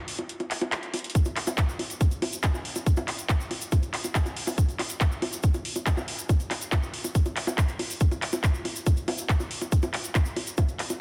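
A layered electronic techno kit with bongos, handclaps and metallic hi-hats opens this intense, hypnotic trance excerpt at 0.1 s, a drum fill at 0.9 s leads into the tight, tape-warm electronic kick up front at 1.1 s, and a grainy, bright acoustic egg shaker sits further back in a live room, all under light reverb.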